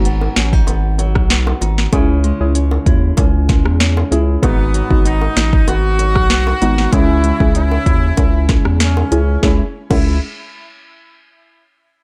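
Tough and sultry, this dancehall excerpt moves at 96 BPM in C# minor, with a saturated, thick sub bass and an up-front afro-pop drum kit of deep kick, sharp snare and smooth hats carrying tape-warm, gritty sampler colour. A deep, mellow chord stab with chorus and a filter sweep shades G#m7 and C#m alongside fingerpicked flamenco guitar arpeggios, while tight, high-tuned bongos sit in the background. At 4.4 seconds a horn section with light vibrato and a smooth top enters as a second line, its phrases carried by digital delay in a dry, close mix.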